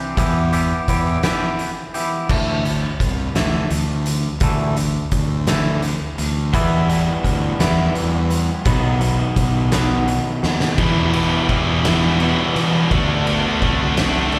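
Angsty and dark, this fragment of quiet-loud alternative rock in E minor moves at a slow 56 BPM in 6/8, opening with clean, twangy guitar arpeggios shimmering through harmonic tremolo and slapback echo over a fuzzy, overdriven fingered bass and an oversized, low-tuned drum kit with a fat snare, punchy kick and dark cymbals; a raw, overdriven garage guitar riff joins at 6.5 seconds, and after a drum fill a bright, high-gain distorted guitar riff enters at 10.8 seconds, all heard as a live gig through the venue's PA with recital hall reverb.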